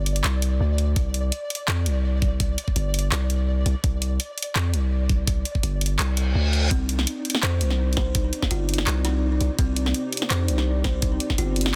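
A deep, decaying sine 808 bass sits up front in this tense, cinematic half-time drum and bass excerpt, joined by a pulsing, detuned gated texture bathed in chorus and reverb, a knocking electronic kick, and a drum kit of handclaps, hi-hat and cracking snare in a small room, while a reverse cymbal at 6.1 s ushers in buzzing, woody kalimba arpeggios with delay at 6.7 s and a dark, moody sawtooth pad that pumps in the background from 8.4 s, all in a dense, heavily limited modern mix.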